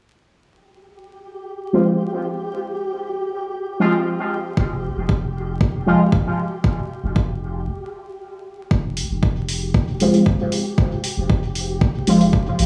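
A flickering, grainy texture opens this hazy, cavernous dub techno excerpt, soon joined by juicy, detuned polysynth stabs under a filter sweep with chorus, phaser and dub echo, while a round sine sub bass and a punchy, tape-warm kick arrive at 4.6 seconds, a brief break falls at 7.7 seconds, and an analog hi-hat enters at 9.0 seconds within an echo-heavy, sidechain-pumped mix dusted with vinyl crackle.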